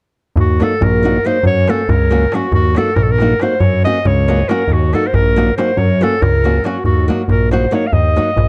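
Fiery and virtuosic, this excerpt of a Balkan wedding-band tune in 5/8 puts a clear, classical-style solo clarinet up front on the melody, lit by plate reverb and tape echo, while a fat, detuned sawtooth analog bass sits equally forward beneath it. Behind them a crisp, deep metal-shell darbuka played with hard hands keeps to the background, and an acoustic flamenco guitar, fingerpicked with audible finger squeak and touched with plate reverb, adds accompaniment from 0.6 seconds. Chords swing between Ebm and Gb throughout, and the production is dark with light reverb.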